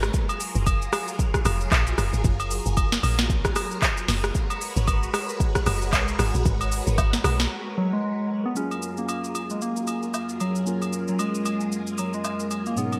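A deep, round log drum bass sits up front in this relaxed amapiano excerpt at 114 BPM in F# major, thumping until 7.5 s beneath an electronic afro-pop kit with a sharp snare and gated reverb, close, dry agogo bells and woodblock, and a swirling, vintage string machine whose phased chords pump with sidechain, before a soft, warbling FM synth lead arrives at 7.8 s with chorus and delay and a clean tine electric piano joins at 8.5 s, in a bright 1980s-style digital production with light reverb.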